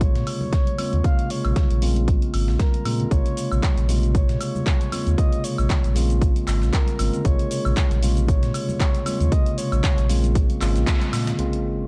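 Moody and hypnotic, this deep house excerpt moves at 116 BPM in 4/4 with a light swing on the sixteenths, sitting on a Bbm7 chord in Bb minor. A punchy, layered electronic kick sits up front beside a deep, full sine sub bass with an added octave that pumps against the sidechain, while a mellow tine electric piano plays clean stabs that pump as well. A breathy, flute-like synth lead carries a soft, sustained melody between Bb4 and F5, colored by chorus, tremolo, vibrato and tape echo, and it drops out at 10.1 seconds. The rhythm bed layers an analog drum machine with handclaps, hi-hat, shaker and woodblock re-recorded in a small room, a very quiet gritty sampler-style kit of hi-hat and snare, and faint acoustic congas from 0.4 seconds. After a band accent, an electronic sub drop lands as an impact at 11.4 seconds, and a barely audible dark ambient pad appears in the final moments of the dark, digitally reverberant mix.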